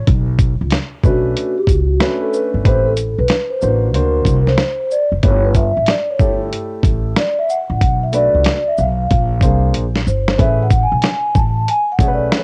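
Swung sixteenths at 93 BPM drive this smoky, cool jazz-hop cut in B minor, where a gritty, compressed sampler-style drum kit with a thumpy kick and a fill at 9.7 seconds sits up front beside a woody, gut-string pizzicato upright bass, a mellow, vintage baby grand piano with long sustain carries chords from Bm9 through Amaj9, and a soft-mallet vibraphone with slow motor vibrato takes a ringing, metallic solo from 1.1 seconds, all captured as a home cassette recording with little reverb.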